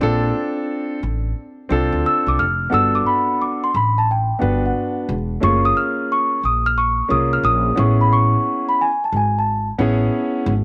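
A dark, vintage-toned grand piano and a woody pizzicato upright bass open this cool hip hop fragment, cut from a longer piece, with a swung sixteenth-note feel under lush major-ninth chords, some voiced rootless. At 2.1 seconds a delicate, bell-like celesta enters up front with a sweet, soft-hammered melody that carries through to 9.7 seconds. The piano's long, smooth sustain and a light studio reverb keep the whole warm and mellow.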